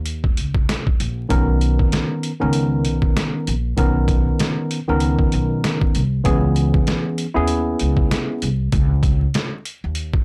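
A swung, compressed, pitched-down sampler-style drum kit with a thumpy kick and medium-tuned snare drives this confident boom-bap hip-hop excerpt alongside a woody pizzicato upright bass, while a worn, slightly out-of-tune tine electric piano with cassette-tape character joins from 1.3 to 8.5 seconds, all three up front in a dry, gritty hardware recording dusted with vinyl crackle.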